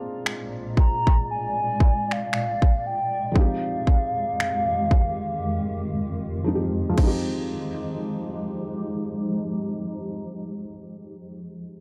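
Contemporary R&B with a sensual, moody air and dark production, where a felt-muted upright piano with audible action noise and a blurred, evolving granular cloud pad with sidechain pumping carry the chords beneath a hollow, woody clarinet-like synth lead with vibrato, chorus and delay, while an up-front trap drum kit of crash, finger snaps and a hard-clipped kick plays under a filter sweep until 7.3 seconds, broken by a silent gap from 5.4 seconds, in this excerpt cut from a longer piece.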